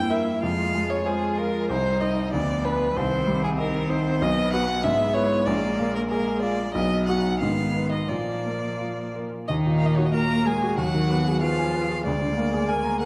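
A rich, smooth violin carries the melody up front with vibrato over a present grand piano, a clear cello second line and a focused viola in the background, in this dramatic, stormy classical-period piano quartet fragment with a rubato feel, dark production and recital hall reverb, shifting to a new section at 9.5 seconds.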